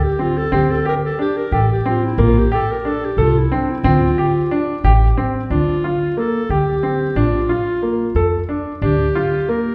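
Heard from further back in a reverberant recital hall, this hypnotic, urgent contemporary chamber piece in 5/8 at 181 BPM pairs a mellow, classical-style solo clarinet melody with brilliant, worn baby grand piano arpeggios, their action noise audible, over woody pizzicato upright bass on gut strings, as chords move from D7sus4 through Bbmaj7 and Dm7 to Gm7/D, where a new section begins at 5.5 s; the bass drops out at 9.1 s.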